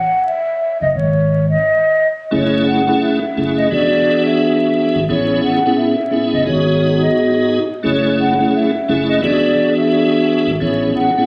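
A breathy, hollow concert flute opens this moody, dark hip hop excerpt with a close-miked melody touched by tape echo, and a round sine sub bass slips in beneath it at 0.8 seconds. At 2.3 seconds a piping tonewheel organ enters up front with chorus vibrato, key click and a slow rotary speaker, voicing swung, jazzy minor-seventh and ninth chords. Captured on a phone in the room, the whole has a dusky, muffled sheen from club reverb, echo-chamber space, compression and vinyl crackle.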